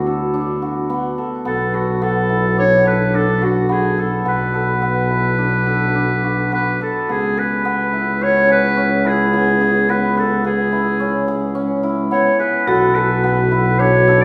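Set in a wet recital hall with a church-like bloom, this contemporary chamber piece sits in an uneven 5/4 metre with a straight feel, urgent yet hypnotic, and is cut from a longer work. A warm clarinet with a soft attack carries the melody in a classical style, its tone distant and roomy. Close up, a hammered dulcimer spins shimmering, ringing arpeggios. Beneath them a mellow tuba holds the bass with light vibrato, punchy yet smooth on top. The harmony moves from D to Bm7, shifts to C#m7 as a new passage begins at 7.1 seconds, and returns to Bm7 at 12.7 seconds, when a metallic, vintage-sounding vibraphone struck with medium hard mallets adds a second line, its motor vibrato colouring a band-limited tone.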